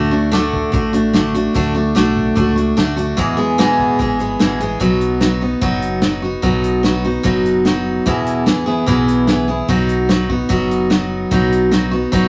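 Nostalgic and down-home, this honky-tonk and classic country fragment moves at a straight 147 BPM in 4/4, drifting from D to E before settling into B major at 4.8 s. A bright, full-bodied picked dreadnought acoustic guitar sits up front carrying the accompaniment, over a dark, round fingered electric bass and a natural country kit whose punchy kick, medium-tuned snare and hi-hat come in at 0.3 s. A moderate small-room reverb gives the sound a modest, homey sense of space.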